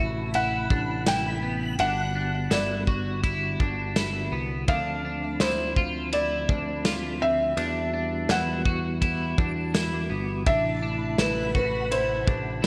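Dream pop with a blissful, floating mood, this short passage from a longer piece moves at an easy, straight pulse through a chord cycle of Am, Gmaj7, Dm7 and Emadd9 before returning to Am. A felt-muted upright piano carries the melody with a soft, intimate, thick-felt tone touched by digital delay. Beneath it, a mellow tonewheel organ holds sustained chords in the background, its flute-like sound shimmering with chorus vibrato and a hint of key click. An up-front electric guitar at the edge of break-up plays twangy, fingered arpeggios through analog chorus and delay, while a picked electric bass anchors the low end with a dark, round, punchy tone. A loose indie drum kit enters at 0.3 seconds with kick, snare, ride and tambourine, its dark cymbals and rolled-off top wrapped in gated reverb, and a reversed, granular swelling texture with a detuned shimmer hovers high in the background until 11.2 seconds. 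The bright 1980s-style digital production sits in a lush hall reverb that lets the parts bloom into a dreamy haze.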